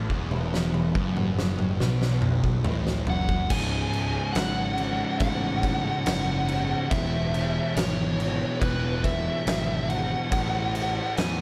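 This stoner and doom metal passage, cut from a longer piece, crawls at 70 BPM in 4/4 in C# minor, with an ominous, brooding mood. An oversized, low-tuned acoustic drum kit sits up front with a punchy kick, fat snare, dark cymbals and toms, its gritty, saturated sound filling a big, pumping room, and it opens with a drum fill from 0.1 s. Two thick fuzz guitars play a distorted, picked riff underneath, one in the background and the other very quiet, while a growly, overdriven picked bass with tube saturation adds a bright, punchy low end. A compressed fuzz lead guitar with delay enters at 3.1 s to carry the melody up front, just before a new section begins at 3.5 s. Behind it all, a very quiet vintage string machine holds swirling, phased sawtooth chords with slow attack and long release. The harmony moves through E5, C#5, E and A5 in a dark, small-room production.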